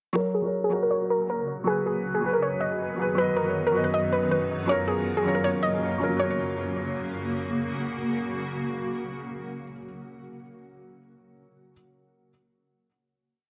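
Triumphant yet wistful, this short, complete hip hop piece has a trap character and moves with a half-time feel. A felt-muted upright piano sits up front with mellow, intimate chords in a spread voicing, repeated like a sampled loop through a low-pass filter and analog delay. Over it, a soft round pluck carries a dark, looping melody with a fast attack and decaying notes, thickened by chorus and echoed by delay until it stops at 7.3 seconds. A granular cloud pad enters at 0.9 seconds, slowly blooming into cloudy, evolving sustained chords with a detuned, full-bodied blur and its own reverb. A filter sweep shapes the opening breakdown before everything settles onto a final chord at 6.2 seconds, and the echo-heavy mix sits in a moderate spring reverb.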